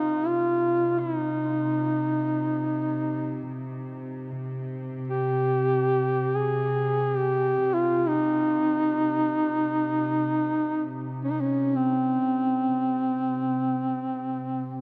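From the first moment, a mellow duduk sings a solemn, mournful Caucasian folk lament in free time and C phrygian, carrying the melody up front with vibrato and a smooth top, while a dark, gut-string chamber cello section bows a low, reedy period-style drone on C3, all within a cavernous cathedral reverb that rings for 6.4 seconds across this 14.8-second fragment of a longer piece.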